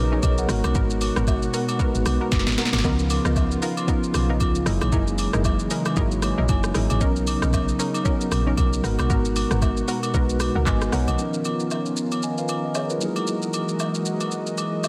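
Soulful, relaxed amapiano at 115 BPM with a swung sixteenth feel, where a deep, round log drum bass and punchy, nasal chord stabs drop out at about 11 seconds, leaving a mellow tine electric piano (with a fill at 6.0 seconds), an airy, detuned analog pad pumping under sidechain, a produced R&B kit with a soft kick and sharp, softly clipped snare, and saturated agogo bells and woodblock to carry the G#m9 to C#13 to F#13 progression through a dense, heavily limited mix with light reverb.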